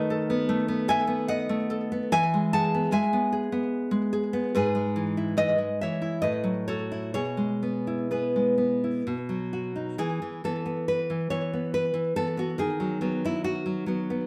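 In a rubato 3/4 that drifts between 63 and 77 BPM, this short cut from a longer romantic piece for solo classical guitar unfolds in E major with a sunny, tender mood. The fingerpicked nylon-string guitar sits up front with a full-bodied, deep tone, audible finger squeak and a touch of slapback echo, moving from B7/D# through E and F#m7/A to a cadence on B before a new passage opens at 10.0 s on E5. Light reverb and a dark production give the whole a warm glow.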